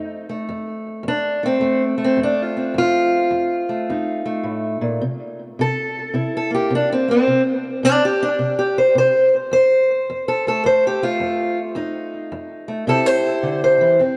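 Soaked in a long, dreamy plate reverb, this soulful, gritty acoustic country blues fragment at 107 BPM features a solo fingerpicked steel-string parlour guitar, dark and boxy, up front and touched with analog delay, swinging in F mixolydian through F7, C7 and back to F7 before landing on C at 12.9 seconds.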